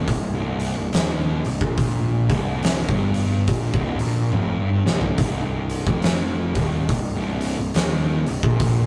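A rough rehearsal-room recording with tube saturation and light reverb carries this heavy, ominous stoner and doom metal excerpt in C minor at a swung 70 BPM, where a thick, distorted fuzz guitar riff grinds over Cm, joined by a second, darker and very quiet fuzz guitar and a growly, overdriven picked electric bass, while an oversized, low-tuned acoustic kit sits up front with a boomy kick, fat snare, hi-hat and toms in a pumping big room and breaks into a drum fill at 4.3 seconds.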